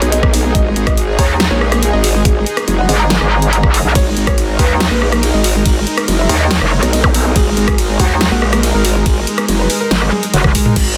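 A half-time 4/4 pulse at 141 BPM drives this aggressive, menacing heavy wobble dubstep drop in G# minor, cut from a longer piece, where a knocking, overdriven electronic kick joins at 0.2 seconds beneath an up-front dubstep drum kit with a huge snare and bright hats, a saturated, growling bass with chorus and a metallic FM wobble bass arriving at 1.2 seconds, while a soft, mellow felt-muted upright piano carries the melody through digital delay with audible action noise over a lush, detuned supersaw pad that pumps from sidechaining in the background, a brief electronic zap flashes at 7.0 seconds, and a drum fill closes the dense, heavily limited modern master.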